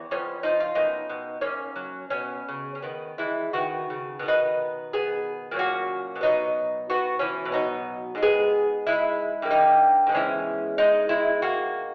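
A delicate, fingerpicked solo lute with gut and double strings, some doubled at the octave, sits up front in this serene, radiant baroque-style dance in triple time, played with rubato and ringing through a wet recital-hall reverb with an AM-radio tone, the short cut from a longer piece turning to a new section at 4.3 seconds.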